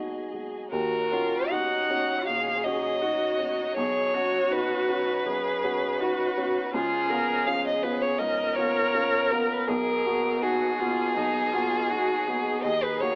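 A rubato 4/4 pulse around 81 BPM carries this fragile, longing neoclassical excerpt in Eb minor, where an up-front baby grand piano plays natural-toned accompaniment under a very quiet, rich chamber string section holding bowed chords from the start, while at 0.7 s a close, smooth solo violin with light vibrato takes the melody over a focused viola line, moving through chords like Ebm7, Badd9 and Db7, all heard as one live group in a moderate stone room with an AM radio sound.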